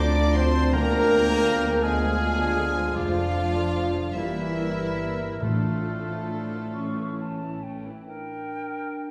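In a rubato 6/8 at roughly 44-55 dotted-quarter beats per minute, this slow romantic movement for symphony orchestra in D minor sounds yearning and solemn. A violin section carries the melody, bowed sul tasto with light vibrato for an intimate, hushed tone, while a second violin line, a mellow oboe and a present clarinet weave supporting lines beneath it. A warm viola section fills in the accompaniment, and dark cello and double bass sections anchor the bass. A clear French horn section and a tight trombone section sustain chords through Dm, Ddim7, Dm/F, Edim/G and Dm/A to an A chord, as a close-miked trumpet adds gentle stabs. Round, calf-headed timpani struck with soft mallets sound from 0.7 s and again at 5.4 s, and a hollow, pure concert flute steps up front at 6.7 s for a brief second line. The whole orchestra is heard from further back in a wet recital hall, and this passage is cut from a longer piece.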